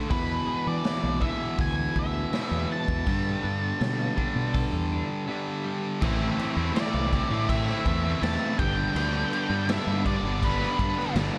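A small room sound frames this dark, angsty slice of quiet-loud alternative rock, where a very quiet, twangy twelve-string electric guitar plays clean arpeggios until 6.0 s alongside an up-front overdriven guitar riff, a distorted octave-fuzz lead melody trailed by digital delay, a growly fuzz fingered bass and a raw garage drum kit with a punchy kick and rolled-off top, before a brief break at 5.3 s gives way to a thick fuzz guitar riff entering in the background at 6.0 s.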